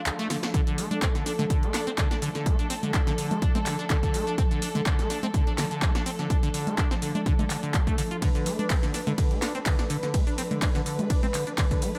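A punchy analog kick sits up front from 0.5 seconds, carrying a tape-saturated weight through this driving, gritty acid house cut, taken from a longer piece, at 125 BPM in 4/4 with a slight swing on the sixteenths. Before it lands, a brief break opens the track and a drum fill arrives at 0.3 seconds. An analog drum machine fills out the groove with congas, handclaps, hi-hat, ride cymbal, shaker and a punchy snare, the snare, clap and hats carrying a short room sound. A squelchy, resonant sawtooth acid bass plays a riff with a fast attack and decaying notes, its filter sweeping while a lush chorus, tape echo and sidechain pumping color it. Alongside, a dark, woody studio string section holds bowed ensemble chords with vibrato and a smooth top, also pumping with the sidechain, over a D minor chord in D dorian. Light reverb gives the mix a touch of space.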